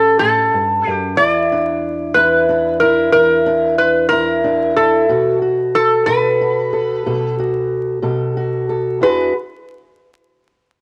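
A crackly home cassette recording in a moderate room opens on a gritty, rollicking acoustic country blues duo in a slow 12/8 at 61 BPM, tuned to A4 = 444 Hz, where an up-front metal-body resonator slide guitar, nasal and metallic with a touch of plate reverb, carries the melody over a dark, woody, boxy fingerpicked old ladder-braced acoustic guitar on old strings, the pair playing together from the start until 9.3 seconds through changes from A7 to E5 and B5 before landing on E9.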